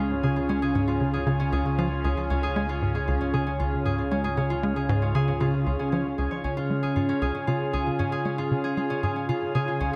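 A lush, thick unison pad sits up front, its detuned sawtooth and square-wave layers holding bright, full-bodied chords with a slow attack, long release and chorus shimmer in this luminous, cosmic piece of ambient, sequencer-driven space music. Beneath it, a tight, punchy sequencer bass drives a dark riff at 116 BPM in a straight 4/4, its filter-plucked tones decaying through subtle chorus and analog delay. A fingerpicked concert harp rings out acoustic arpeggios in Db major, echoed by its own analog delay. A deep, round sine sub bass holds a mellow, warm low Db until 6.4 seconds, when the music moves into a new section and a filter sweep on the synth bass carries through to 10.0 seconds. A moderate plate reverb gives the whole a spacious, floating sheen, and the passage is cut from a longer piece.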